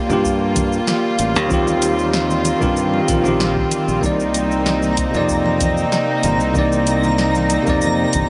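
A hazy, dreamy mix soaks every part in a huge ambient reverb with a long tail, and the top end is rolled off so the whole sound feels soft and distant. This is wistful, smooth sunset chillout in a straight four, cut from a longer piece and moving through Gm7, Eb69 and Cm9. A bell-like tine electric piano carries the accompaniment through an analog delay. A dark studio string section holds sustained, floating chords with a soft bowed attack and a touch of vintage sampler grit. Beneath them, a bright, growly fingered electric bass joins a deep house kit of cabasa, hi-hat and an overdriven, punchy snare, along with very quiet congas played with soft hands and a deep, tape-warm electronic kick. At 4.9 s a twinkling granular texture rises in the background, adding a sparkling, octave-up shimmer with its own reverb over the final seconds.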